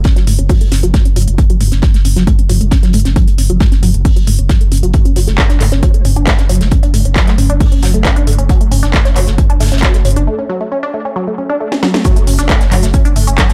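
A dry sound frames this relentless, intense stretch of driving peak-time techno, cut from a longer piece, where an overdriven, up-front electronic kick and a layered techno kit with cracking snare, handclaps, shaker and toms pound beneath a deep, saturated sub bass that pumps with the sidechain. A juicy, squelchy blip pluck carries the riff through phaser and dub echo, while a damped 70s acoustic kit adds a fat snare and filtered hats low in the mix. A filter sweep runs on the synth arpeggio through the whole opening section, a break arrives at 10.3 seconds, and a drum fill leads into the drop at 12.1 seconds.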